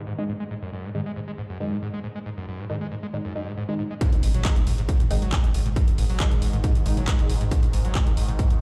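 A screaming, squelchy acid line with resonant sawtooth bite and gritty 12-bit distortion drives this relentless peak-time techno from the start, over muted, detuned dub chord stabs that are filter-swept through the opening. At 4.0 seconds the drop lands with a heavy, overdriven kick up front, a layered kit of handclaps, hi-hat and toms, a very quiet impact and a thick, saturated sub bass pumping under the sidechain, while a swarming, warbling sine drone emerges in the background at 5.5 seconds. The mix sits in a stone-room reverb, as if played on a big sound system in a bare room.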